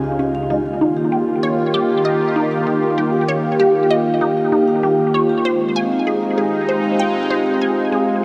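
This is ambient, sequencer-driven space music at 97 BPM in a straight 4/4, cosmic and mysterious in mood, heard as a short cut from a longer piece. A sweeping, airy pad holds sustained chords throughout, its detuned sawtooth tone evolving under a slow filter swell and dressed in chorus and shimmer reverb. Alongside it, a vibraphone played with medium mallets spins metallic, ringing arpeggios with a slow motor vibrato, trailed by tape echo. Up front, a juicy, squelchy blip pluck repeats a riff with a fast attack and short decay, its resonant filter and moving notch run through phaser and tape echo. For only the first 0.5 seconds, a very quiet, mellow stepped-filter texture bubbles beneath, before the harmony moves from Dbadd9 to Ebadd9 and settles on Ab at 5.5 seconds, all bathed in a huge, long-tailed reverb with lossy compression artefacts.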